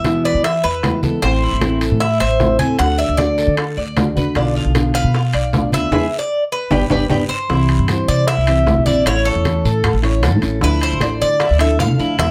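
A Cuban tres opens this nostalgic son and guajira excerpt at once, carrying the metallic, double-strung melody up front over a dark, full-bodied nylon-string guitar with audible finger squeak, a woody pizzicato upright bass, low-tuned thick-skinned congas and a raspy guiro in the background. Tight, high-tuned bongos with a vintage, band-limited tone and ringing metal-shell timbales join at 0.1 seconds. A second tres adds picked arpeggios beneath the lead, its octave-doubled strings blending into the middle of the texture. The groove moves at a straight 153 BPM in 4/4, in A harmonic minor, through a progression from E to Am, D and Bdim. A band accent lands at 5.9 seconds and is topped by a drum fill at 6.7 seconds, leading into a new passage over C, A and Dmadd9. The moderate studio ambience keeps the ensemble warm and intimate.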